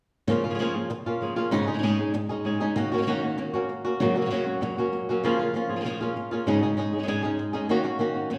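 A large studio's lush reverb surrounds this short cut from a longer flamenco piece, lending it the feel of being heard from further back in the room. Two fingerpicked acoustic flamenco guitars sit up front from 0.3 s: one carries a fiery, festive melody with a warm tone, while the other, equally warm and fitted with fresh strings, punctuates it with stabs. Together they move through a cycle of Db6, Absus4, Ebm7 and Gb chords until the excerpt breaks off at 8.4 s.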